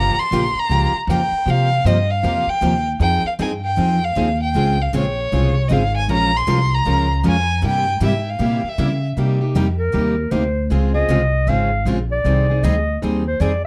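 Acoustic string swing in the jazz manouche style, this short cut from a longer piece moves with a swinging, bittersweet lilt. A bowed violin carries the melody up front for the first 9 seconds, its smooth, even tone touched with light vibrato and a tape echo. Beneath it, two picked steel-string acoustic guitars supply the accompaniment: a bright plugged-in parlour guitar and a full-bodied jumbo set further back, where a little finger squeak can be heard on its fresh strings. A pizzicato upright bass on gut strings sits up front with a woody, thumpy sound, moving through minor-seventh and altered dominant changes before the music settles into C minor. From 9.8 seconds a clarinet takes a jazz-style solo with a mellow subtone, scooped notes and gentle vibrato over the guitars and bass, all heard through close, detailed microphones and light reverb.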